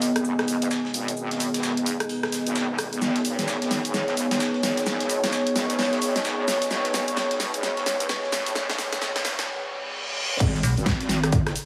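Swaggering and gritty, this bass house excerpt at 130 BPM in G# minor builds with a swung groove as a moody, detuned analog pad and a heavy, chorused wobble bass pump beneath a big-room dance kit with a huge up-front snare, a background breakbeat sampler kit re-recorded in a large room, a nostalgic lo-fi tape-like pad, and a very quiet riser and reverse cymbal, before the drop at 10.4 seconds lands a punchy electronic kick and a brief metallic FM bass stab, all set in a lush hall reverb.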